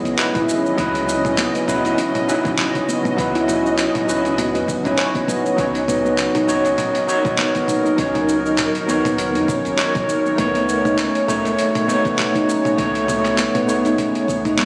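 A barky, overdriven tine electric piano sits up front through a combo amp, its fast tremolo, delay and sidechain pumping colouring the accompaniment while a ringing, meditative handpan plays arpeggios with delay and a cloudy, evolving granular pad holds sustained chords in the background. This earthy, hypnotic organic downtempo excerpt moves at 100 BPM in C# minor with a 16th-note swing, drifting through C#m11, D#m7 and B9 over a round sine sub bass. A gritty, overdriven sampler-style kit of handclaps, hi-hat, shaker and toms joins at 0.1 seconds, a deep layered electronic kick follows at 0.4 seconds, and the whole is heard through a moderate echo-chamber reverb as if recorded on a phone in the room.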